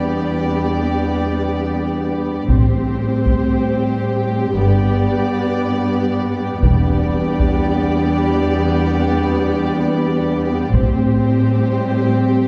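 Epic orchestral film score that builds relentlessly, with a lush violin section carrying the expressive, vibrato-rich melody over a second violin line, distant violas and dark, tight French horn chords, while focused cellos sit up front on the bass, double basses in the background join at 2.5 and 10.7 s alongside heavy-stick taiko hits at 2.5, 6.6 and 10.7 s, and a wet scoring-stage reverb places the orchestra further back in the room.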